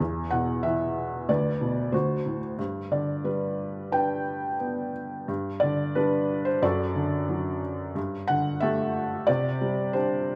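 A felt-muted upright piano opens this brief, relaxed and sunny excerpt of lyrical classical solo piano, playing alone in G major at 91 BPM with a gentle rubato feel, its soft, intimate, thin-felt tone sitting up front in a moderate recital hall reverb as a phrase heard at 0.0 seconds returns at 5.3 seconds and moves through chords such as Bm/D, D7, G, D/F#, Gsus2 and Csus2 before the clip ends at 10.4 seconds.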